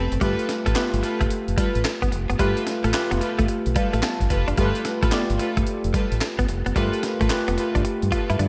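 New jack swing R&B, punchy and confident, with a swung groove of gritty, gated-reverb breakbeat drums (thumpy kick, high-tuned snare, handclaps, hi-hat and toms) over a dark, round fingered bass, a worn, slightly out-of-tune tine electric piano with analog chorus that plays a fill at 3.5 seconds, rich bowed string stabs, and a clean, picked electric guitar riff with analog chorus from 0.2 seconds, set in a bright 1980s-style digital mix with lush hall reverb.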